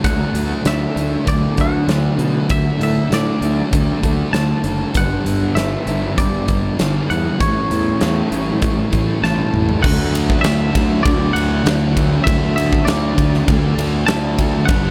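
Rock in a shoegaze and dream pop vein, this blissful, dreamy fragment of a longer piece moves at 98 BPM in a straight 4/4 in D major, passing from D through Gmaj7 and A7 before landing back on D. A huge arena drum kit sits up front with a punchy kick, fat snare, bright cymbals and a pumping hall sound, and it plays a fill at 9.2 seconds leading into the second section. Driving the riffs are a thick, up-front fuzz guitar soaked in distortion and lush chorus, and a very quiet crunchy overdriven guitar, while a growly fingered bass adds overdriven fuzz underneath. Above them, a clean, compressed, twangy electric guitar carries the melody in a high register through tape echo. A very quiet, jingly, vintage-toned tambourine joins at 10.4 seconds, and the whole mix sits in a small room ambience.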